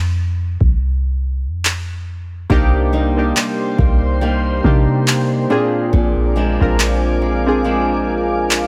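Contemporary R&B in C minor at a slow 70 BPM with a swung sixteenth feel, this late-night, sensual passage opens on a deep, sine-pure 808-style bass, joined at 0.6 s by a booming, tape-warm analog drum machine with handclaps and a deep kick, before round analog keys with chorus and a filter sweep arrive at 2.5 s alongside fingerpicked flamenco guitar arpeggios trailing tape echo, and a glassy, ethereal FM pad with ensemble chorus, built-in reverb and sidechain pumping settles in at 3.1 s over the Cm7, ahead of the move to Bb7, in a light-reverb room.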